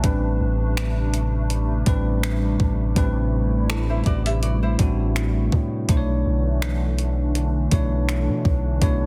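Contemporary R&B at 82 BPM with a light 16th-note swing, moody and sensual, built on a bell-like tine electric piano voicing Am11 and then Bm11 at 5.9 seconds over a deep, sine-toned 808-style bass and a hollow, flute-like pad thickened with ensemble chorus. A crisp 8-bit drum machine sits up front with finger snaps, hi-hat and a thumpy kick, its snare softly clipped, while a fingerpicked nylon-string guitar adds brief arpeggios with digital delay and audible finger squeak from 3.7 to 5.7 seconds. The sound is dry and close, with a dense, heavily limited modern master.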